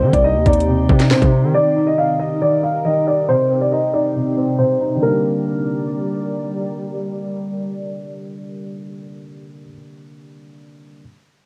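This tense, dark drill excerpt opens with everything arriving at once: a knocking kick, sharp snare and metallic hats from an electronic drum kit, a saturated 808-style bass with a noise layer and a fast, decaying attack, and a glassy FM pad that blooms slowly with chorus, phaser and reverb. The drums and bass drop away after about 1.5 seconds, leaving the half-time groove suspended over the keys. A dark, boxy concert grand carries the melody up front through a low-pass filter and analog delay until about 6.3 seconds. Beneath it, a felt-muted upright piano plays soft, intimate accompaniment with audible action noise and cassette-tape grit, continuing alone to 11.0 seconds after the pad fades. The harmony moves from Cm through Eb and back to Cm before settling on Gm, while a filter sweep shapes the opening five seconds of this lightly reverberant home-cassette recording.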